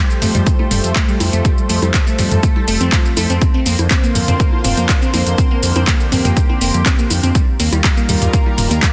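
A lush, detuned unison pad with chorus and phaser opens this hopeful, expansive progressive house excerpt in Bb major at 122 BPM, joined at once by glassy, crystalline wavetable pluck arpeggios carried on tape echo, both pumping to the sidechain over Fadd9, Bbadd9/F and Ebadd9 chords. A dark, rumbling detuned saw bass and a deep house kit of metallic hi-hats, handclaps and shaker arrive almost immediately, with tape-softened electronic toms and congas tucked in the background. From 0.5 seconds an overdriven, layered kick sits up front in a dense, heavily limited mix with light digital ambience.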